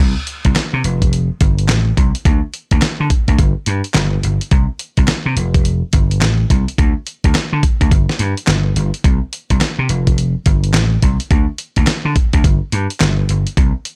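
A dry, up-front mix carries this confident, slick new jack swing groove at 106 BPM with a 16th-note swing, where a punchy, amped vintage slap bass opens at 0.0 seconds and a gritty, compressed sampler-style soul drum kit joins at 0.3 seconds with a thumpy kick, fat snare, hi-hat and handclaps.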